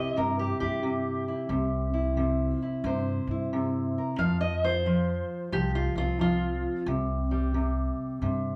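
Acoustic country blues with a swaggering, laid-back mood, played by a small group at 90 BPM in 4/4 with a lilting swing on the eighth notes, in C major. A fingerpicked steel-string dreadnought guitar carries the melody and sits up front, its dark tone ranging from C3 up to F5 as it takes a solo across the whole passage. An upright bass, plucked pizzicato on steel strings, comes in at 0.2 seconds with a woody low line between C2 and G2, sitting a little behind the guitar. The harmony moves from C to F5 and then C5. The pair sound as if they are playing live together in one room, surrounded by a generous large-studio reverb, and the 8.6-second passage is cut from a longer piece.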